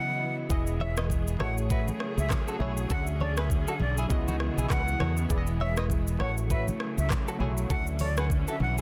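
A dry, dense and heavily limited mix opens this romantic, joyful afrobeats cut at 100 BPM in E major, where a breathy flute melody with digital delay, glassy chorused keys and lush bowed strings carry the first 0.5 seconds before a round, dark fretless bass and an up-front electronic kit of knocking kick, metallic hats, handclaps, rim click and shaker arrive. At 0.8 seconds a clean, picked electric guitar riff with tremolo and delay joins alongside very quiet, soft-handed congas, all riding a swung sixteenth-note feel over chords moving from C#m11 through Emaj7, A6 and Dmaj9.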